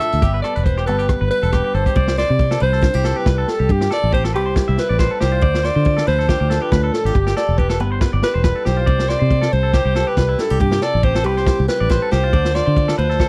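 This carefree highlife guitar-band excerpt opens with an alto saxophone solo over the full band, with a fingered electric bass joining at 0.1 seconds. The tune moves at 139 BPM in 4/4 with a lightly swung sixteenth-note feel in C major, cycling through G6, C and Dm. The up-front saxophone carries the melody with a warm, jazz-style subtone, vibrato and scooped notes. A clean, bright, twangy electric guitar plays arpeggios with a slapback echo, while a boxy parlour steel-string acoustic guitar with fresh strings picks its accompaniment from the background. Underneath, a gritty, saturated breakbeat kit with a tight kick, medium-tuned snare, rim clicks, hi-hat and a rolled-off top sits beside a dark, round, foam-muted bass that stays up front. The sound is dry and close, like a 1970s studio recording.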